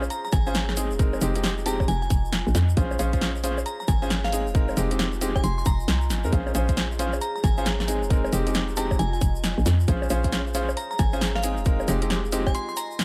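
This skippy, bouncy two-step garage excerpt opens at once on a hollow, knocking FM bass sitting up front. Alongside it come a punchy analog drum machine of bongos, hi-hat, rim click and snare, and a grainy, mellow tube shaker kept close and dry in the background. Moments later a warbling, lo-fi pad and a glassy, crystalline synth bell carrying the melody arrive, with a tight, layered electronic kick landing at 0.3 seconds. At 135 BPM on swung sixteenths in Bb minor, the harmony rocks between Bbm7 and Fm7, and a brilliant concert grand piano adds short stabs from 0.5 seconds, thrown into tape echo. The drum machine carries analog delay and a tape-tinged, small-room character, while the bell is coloured by chorus and delay, and the nostalgic, dark pad pumps against the sidechain beneath chorus and its own reverb. The echo-heavy mix has light digital ambience, and a brief break at 12.5 seconds closes the fragment as the bass, kick and piano drop out.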